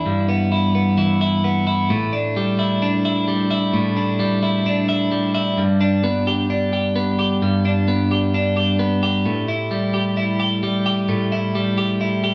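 Bathed in the wet reverb of a large studio, with a softened top end and the live feel of a band in one room, this nostalgic, breezy indie pop fragment features a lone twelve-string electric guitar, set up front and clean, whose bright, twangy, compressed picking moves from G6 into A7sus4 at 1.9 seconds, then through G to a closing A5 at 9.3 seconds.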